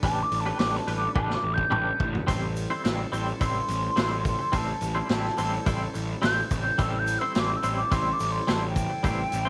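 Vinyl crackle and a small-room ambience frame this trippy, dark psychedelic rock excerpt in A minor at 106 BPM, where an airy, hollow concert flute with vibrato and slapback echo carries a solo melody over a reedy tonewheel organ's sustained chords turning through a slow rotary speaker in the background. A clean, twangy electric guitar plays a riff through tremolo, while a growly, round fuzz bass sits up front beside a vintage drum kit with a tight kick and rolled-off top that plays a fill from 1.2 to 2.3 seconds. A grainy egg shaker joins in the background at 2.3 seconds as the chords move from Gadd9/A to Am7.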